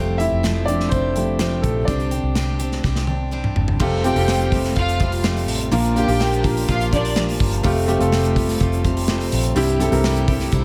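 A smooth, vintage grand piano leads this hopeful, anthemic piano-driven pop passage in F major at 125 BPM, joined by a full-bodied picked dreadnought acoustic guitar riff and a dark, round, foam-muted electric bass, while a punchy, up-front studio drum kit plays a fill from 2.8 seconds leading into the second section at 3.8 seconds, where a lush, distant bowed violin section with expressive vibrato adds a second line from 4.0 to 7.1 seconds over chords moving through Fadd9, Csus2 and Bb, the whole cut from a longer piece and set in light studio reverb.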